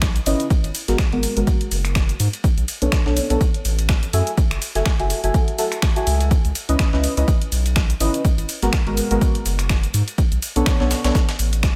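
A dry mix with little reverb frames this hypnotic, moody deep house passage, cut from a longer piece and set at 124 BPM in C# minor with a gentle 16th-note swing. An up-front, layered electronic kick anchors the groove, joined by a punchy, overdriven analog drum machine carrying cabasa, finger snaps and hi-hat in a large room, while a gritty, tape-warm breakbeat kit adds high-passed ride cymbal and a medium-tuned snare further back. A round, dark analog bass with a sine-like, sustained tone pumps with sidechain compression from F#1 to G#2. From 0.3 seconds until 11.2 seconds, a soft, mellow chord stab with a detuned, sub-octave body and fast, decaying attack floats through chorus, phaser, cassette-tape coloring and tape echo, also pumping with the sidechain. The harmony circles through C#m9, G#m9, Bm9 and F#m9, giving the loop a brooding, suspended quality.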